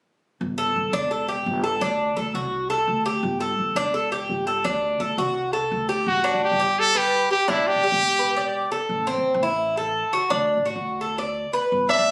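This sounds like a phone held up in a large studio, with a moderate reverb of about 1.2 seconds and compression, so the room is clearly audible around the players in this short cut from a longer piece. The music is sunny Cuban son and guajira in G major at a brisk 170 BPM in straight 4/4. An up-front acoustic tres enters at 0.6 seconds, picking bright, metallic arpeggios on its doubled strings, some of them in octaves. Beneath it, a woody, dark upright bass plays pizzicato on steel strings, sitting well back in the mix. The opening section alternates Gsus2 and D7. At 6.1 seconds the harmony moves through G, Em7, Am and D, and a brilliant, punchy trumpet takes the solo melody with vibrato and scooped notes, played in a present pop style that stands out above the other parts.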